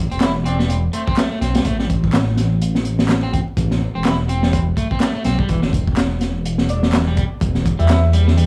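A rumbling, detuned sawtooth bass opens this gritty, funky breakbeat cut at 125 BPM in A minor. It is joined almost at once by a crunchy drum kit with a punchy kick, a high-tuned snare and swung sixteenths, by overdriven, layered electronic handclaps, and by a picked electric guitar riff at the edge of break-up with tube saturation and digital delay. A soft, airy lead with chorus, vibrato and a telephone-like tone drifts in the background at 0.5 and again at 6.7 seconds, while the harmony moves from Am to Em at 5.5 seconds over a dry sound and vinyl crackle.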